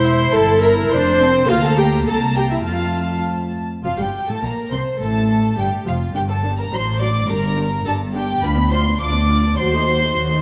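Stormy and urgent, this quick classical-period movement for string orchestra, cut from a longer piece, moves at 104 BPM in a straight 2/4 in F major, tuned to A4 = 439 Hz. Two violin sections play throughout, one on a pure, floating melody and the other on a second line beneath it. The violas give smooth-topped accompaniment, while cellos and double basses share the bass, both bowed sul tasto with light vibrato and an intimate closeness, the double basses sitting most up front. Every section plays with a soft attack and a warm ensemble tone, wrapped in a wet scoring-stage reverb. The opening phrase cycles through Gm69, Bb/D and C7 before settling on F. From 3.8 seconds the harmony darkens toward Gm and D7/A, then grows tense with Bdim/D and a closing D#dim7 at 9.6 seconds.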